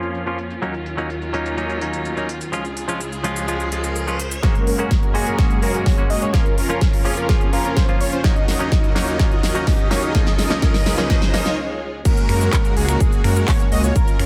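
Lightly reverberant and softly filtered, this triumphant, euphoric festival progressive house clip at 126 BPM opens with twangy, tape-echoed clean electric guitar, clear bowed strings and a crisp big-room kit of huge snare, handclaps, snaps, shaker and crash, with a background riser entering at 1.9 s; a punchy up-front kick, a thick pumping supersaw riff and bold, bright detuned unison lead arpeggios arrive at 4.4 s for the build-up, and after a short break the drop lands at 12.1 s, with a lush, chorused detuned saw bass joining at 12.3 s.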